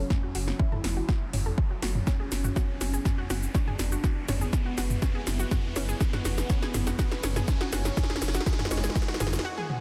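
Hypnotic and cinematic, this melodic techno build-up, cut from a longer piece, is driven by an overdriven electronic kick and a deep house kit of punchy snare, metallic hats, shaker and toms, with a drum fill running through it, while a menacing, saturated detuned saw bass pumps up front. A bright, round analog pluck plays chorused, delayed arpeggios and a fat sawtooth lead carries the melody in the background, both under filter sweeps, as a very quiet, moody pad holds sustained chords. A riser runs until 9.4 s and a swell arrives at 9.0 s, set in light digital ambience within a dense, heavily limited master.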